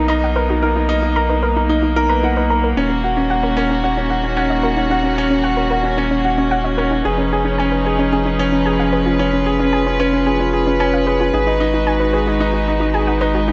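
A straight 4/4 pulse carries this cinematic, moving piano-and-strings electronica, where a worn, up-front concert grand with delay plays a riff over reedy, gut-string chamber strings holding sustained chords, a dark, round analog bass, and a soft, warbling pluck tracing arpeggios in the background through chorus, cassette tape and delay, the whole set in a lush hall with a dim top end.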